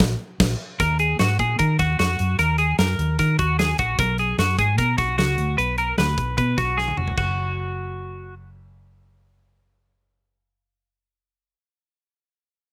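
A drum fill and a full-band accent open this breezy, nostalgic fragment of jangly indie pop, with a big acoustic rock kit, fat snare and china and crash cymbals sitting up front beside a dark, round, foam-muted electric bass. At 0.8 seconds a bright, twangy twelve-string electric guitar enters with clean, compressed arpeggios carrying a slapback echo over D#m and then B5. The drums play another short fill from 6.8 seconds and stop at 7.3 seconds, the guitar carries on until 8.3 seconds, and then the bass plays alone until 11.5 seconds in a dry, open-air sound.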